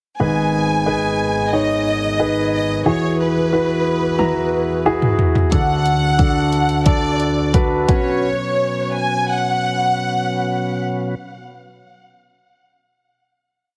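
Piano-driven pop with a warm, anthemic mood moves at 90 BPM in 4/4 with uneven beats, forming a whole short piece built on a single verse that slows down from 5.5 seconds to its close. A concert grand piano leads the accompaniment in close-voiced quarter-note chords, intimate and polished with deep bass, long sustain and audible action noise, until it stops at 8.3 seconds. Above it, a studio violin section carries a smooth, even, motif-based melody with vibrato, bowed up front as a close ensemble. A percussive tonewheel organ holds sustained chords as a full pad, lightly overdriven and colored by chorus vibrato, second harmonic percussion and a slow rotary speaker. A produced, layered, overdriven electronic pop drum kit enters at 4.2 seconds with a fill, then stomps a four-on-the-floor beat with a knocking kick and warm hats before dropping out at 8.0 seconds. The harmony moves from G#m through Eadd9 and D to Bsus2, all set in moderate plate reverb with a heavily compressed, radio-like sound.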